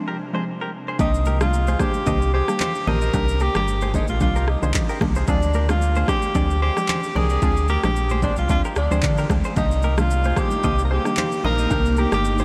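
A lightly swung sixteenth-note groove in four drives this smooth, hypnotic afrobeats excerpt, carried by an electronic, produced drum kit of deep kick, rim click, handclaps and shaker with a tape-warm tint. It opens with a one-second break where a hollow, bouncy square-wave pluck with detuned chorus, a twangy clean electric guitar riff and a glassy, warbling FM pad sit over a half-diminished chord. At 1.0 seconds the drums, a full, sine-toned sub bass with octave placed up front, and a mellow tenor saxophone arrive, the pad dropping away until it returns in the background near the close. The sax plays a jazz-style solo melody with subtone and scooped notes, distant and roomy yet prominent, touched with analog delay, while bright, high-tuned congas played with hard hands join far back from 1.3 seconds. The harmony alternates between minor seventh and half-diminished chords, and a huge ambient reverb soaks the mix in a dreamy haze.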